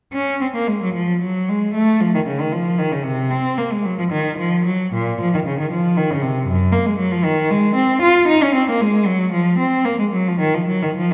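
Introspective and solemn, this short excerpt from a baroque-style suite movement for unaccompanied cello has a lone player bowing a rich, smooth line with vibrato in 6/8, its uneven beats bending with rubato, heard close and up front amid the lingering reverb of a recital hall from 0.1 to 11.1 seconds.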